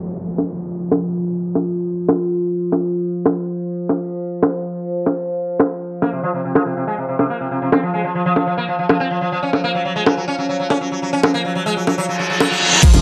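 A nasal, resonant drone with moving overtones opens this alien, intense psychedelic trance passage in a moderate plate reverb and digital ambience, its chorus and sidechain pumping riding under a filter sweep while an electronic downlifter sounds at the start. A techno kit of bongos, crash and smooth hats with overdrive sits up front from 0.4 seconds, and at 6.0 seconds a bright, buzzing, plectrum-plucked sitar with shimmering sympathetic strings takes the melody through phaser and delay. A reverse cymbal leads into an impact at 12.8 seconds, where a knocking, overdriven kick, a tight sawtooth sequencer bass and a detuned unison pluck in the background arrive just as the excerpt cuts off.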